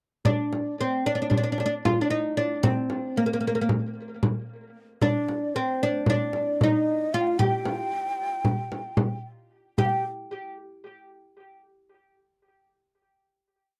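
A straight 9/8 pulse from a small frame drum, playing a low and high stroke pattern up front, opens this longing, melancholic Turkish makam ensemble piece, heard in a dry, close 1970s-style studio sound. Over it a fretless, plectrum-plucked oud with double strings plays an ornamented modal melody in a bright, woody tone touched by tape echo. At 5.0 s a breathy low ney with vibrato joins on the same line with its own ornaments, before the piece settles on a final chord at 9.8 s.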